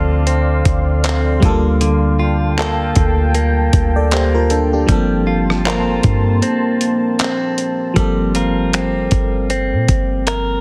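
A sultry, longing contemporary R&B excerpt opens with a glassy, bell-like FM electric piano, a moody sawtooth pad, a twangy clean electric guitar picking arpeggios through delay, and a round, sine-like 808-style bass sitting up front. A moment later a dusty soul sampler-style drum kit joins, its gritty sound built from a thumpy kick, hi-hat, rim clicks, handclaps and finger snaps over a slow, swung sixteenth-note feel. The warbling, vintage electric piano and the detuned, slow-blooming pad both carry chorus, and the pad also has its own reverb and drops out at 7.9 seconds. The harmony moves from Dm7 to Gm9/D and settles on Gm11, giving the piece a sensual glow. The kick falls away between 6.4 and 8.0 seconds before the final stretch. The sound is dry and heavily compressed, with a radio-like punch that pushes the bass, drums and bright guitar forward.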